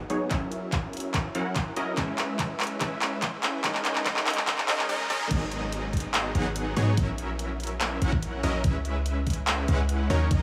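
A punchy, detuned supersaw stab sits up front, its filter sweeping through a build-up before the drop lands at 5.3 seconds. This dreamy, lush future bass piece moves at 144 BPM in a half-time feel in G# minor, with chords including F#7/A#, C#m7 and G#m7. A deep, boomy 808-style bass pumps alongside the stab, while an overdriven dubstep kit with a huge snare, handclaps, hi-hat and crash and a knocking electronic kick fill the space, all bathed in a long shimmer reverb.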